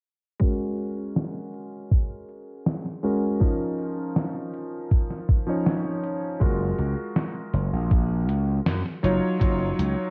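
Melancholic and hazy, this vaporwave excerpt drifts at 80 BPM in a straight 4/4, tuned slightly sharp to A4 = 441 Hz, with a filter sweep running through its whole length. A clear, vintage electric grand piano carries the accompaniment, its clangy low end dressed in lush chorus and analog delay as it moves through Ab9sus4, Db69, Gbmaj9 and Ebm9/Gb. A thumpy, sampler-style electronic kick drum sits up front with 12-bit grit, joined by a gated 80s digital drum machine playing hi-hat and a snare with gated reverb, both carrying a tape-warm tone from re-recording in a small room. At 6.4 seconds a bright, punchy slap bass enters, overdriven and direct, reaching down to Gb1. The production is dark and cassette-worn, with light reverb and a low-pass filter softening the top end.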